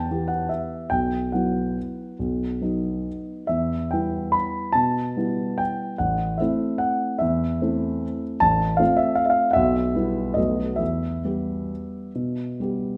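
A concert grand piano plays alone throughout this nostalgic, wistful classical waltz fragment, its deep bass and short sustain sitting up front in a wet recital hall reverb. The triple-metre feel is loosened by rubato as the harmony moves from Em through Bsus4 and B to Am and F/A, then settles back on Em after a B7 at 10.4 seconds. The part spans A1 to B5, giving the brief passage a full, resonant reach.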